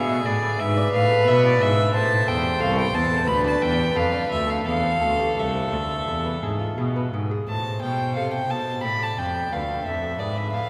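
Classical, baroque-style sonata movement with continuo, cut from a longer piece, moving in an introspective, solemn A minor at around 87 BPM in 4/4, with uneven beats and a rubato feel. Two violins sit up front throughout the 10.7 seconds, one carrying the melody with light vibrato and the other a close second line, both bowed by single players with a reedy, gut-string period tone. Beneath them a bowed cello holds the bass with the same rich, period-style character, while a fingerpicked lute with double nylon strings, some octave-doubled, adds delicate, bright accompaniment in the background. The harmony moves from E7 through Am, Dm and E before returning to Am and touching Bm7b5 near the close. A wet cathedral reverb with a long 5.5-second decay places the ensemble in a church or concert hall.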